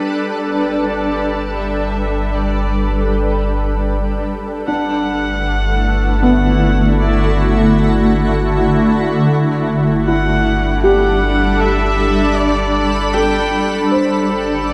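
Ambient music in 3/4 at 78 BPM, serene and warm in G major, drifting from Gadd9 to Gmaj9 and settling on Dsus2/G near 13.9 seconds in this short cut from a longer piece. A shimmering, ethereal pad sits up front with sustained chords spanning D3 to B5, its octave-up shimmer, granular texture and chorus giving a bright glow. Beneath it, a felt-muted upright piano plays soft, mellow arpeggios in the background, colored by tape echo. A round analog bass holds a deep, dark G1 throughout, with a filter sweep adding movement to its sine-like tone. From 0.8 seconds an amplified electric violin fades in with a rich, smooth bowed melody between D5 and G5, its vibrato trailing tape echo, and a wet concert hall reverb with a 2.0-second decay surrounds the whole ensemble.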